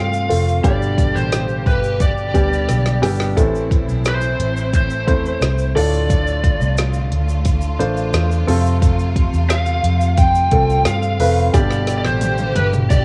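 Piano-driven pop with a dramatic, earnest mood, cut from a longer piece: an overdriven, dark lead guitar carries the melody up front over a woody upright piano, while a lush, bowed string section with vibrato sustains chords in the background. A round, foam-muted electric bass sits forward alongside a layered, electronic deep house drum kit with a deep kick, woody snare and smooth hats, which enters at 0.3 seconds and plays fills around 2.7 and 11.5 seconds, as a grainy tube shaker adds bright texture behind it. The whole recording has a worn, warbling cassette-tape character with drifting pitch, small room ambience and light reverb.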